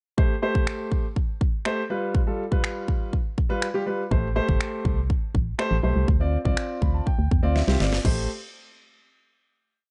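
Energetic and confident, this short dance-pop piece in A minor moves at 122 BPM, with a warm concert grand piano playing syncopated chord stabs that pump with sidechain over a punchy, layered pop drum kit of kick, deep snare, finger snaps and crash cymbal. At 4.1 seconds a hollow, dark organ-like FM bass with a fast, decaying attack enters up front with a syncopated line, also pumping, as the chords move from Am7 and G7 to Am7 and Dm7. A piano fill and a brief drum fill lead into a closing Am7 chord, all in a dry, close sound.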